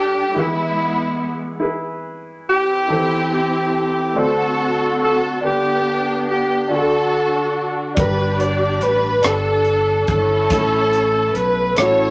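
Slow gospel in a straight 6/8, jubilant and hopeful, where a raspy, growling alto saxophone with scooped notes shares the melody with a lush, up-front string section full of vibrato and portamento over an intimate grand piano with audible action noise, before a bright, growly fingered electric bass and a crisp fusion drum kit with a punchy kick, hi-hat and rim click join at 8.0 seconds in a wet studio reverb.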